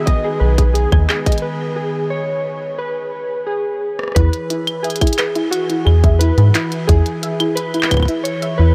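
A dark, metallic FM bass with a fast, decaying attack sits up front in this intricate, playful IDM piece at 88 BPM in E major, cut from a longer work, over a tight electronic kick and a glitchy kit of claves, handclaps, clicky hi-hats and rim clicks, both re-recorded in a small room. Warbly, nostalgic lo-fi synth keys carry the melody with chorus and tape echo, while a soft, round pluck plays arpeggios through lush chorus and echo, and a glassy, ethereal FM pad holds sustained chords with vintage 12-bit grit and sidechain pumping. A very quiet, bubbling stepped-filter texture drops out at 1.4 s as a break begins, a drum fill closes it, and the harmony moves from G#m/B to E at 4.2 s, all in light digital ambience.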